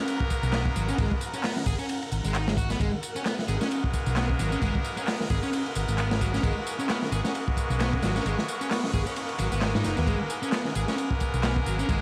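This energetic, gritty breakbeat excerpt opens with lush, bowed symphonic strings holding sustained chords in the background under sidechain pumping. Alongside them come a double-tracked fuzz guitar riff, thick with distortion, tube saturation and tape echo, and bright, vintage horn stabs with octave doubling and their own tape echo. A crunchy, saturated drum kit with dark cymbals and a tight kick arrives at 0.1 s with layered electronic tambourine and handclaps, and a round, hollow-body fingered electric bass sits up front from 0.4 s, all over a swung sixteenth-note feel in a dry, small room flecked with vinyl crackle.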